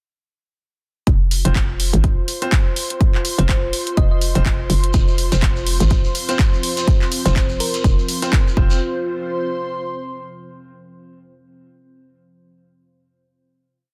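Swaggering and bouncy, this short bass house piece drops in at 1.1 seconds with a punchy, up-front four-on-the-floor kick, a tape-warm house kit of claps and closed and open hats carrying a swung sixteenth feel, and a hollow, knocking FM bass with overdrive and sidechain pumping that plays chopped phrases low in the register. An airy, breathy pad with a vintage warble and chorus drifts through slowly shifting chords, while a clear, intimate baby grand piano, its action noise audible, adds sparse chord stabs moved in parallel and trailed by tape echo. A round, tine-like synth pluck with a thumb-piano quality sits in the background with short answering phrases, first around 3.4 seconds and again near the end. A grainy, distant shekere joins with hand-played sixteenths, and from 5.6 seconds a deep, moody sawtooth pad with a sub octave and its own reverb fills out sustained chords beneath. The mix is dense and heavily limited in a light reverb, and after the groove stops at 8.8 seconds the airy pad rings on alone as a final note.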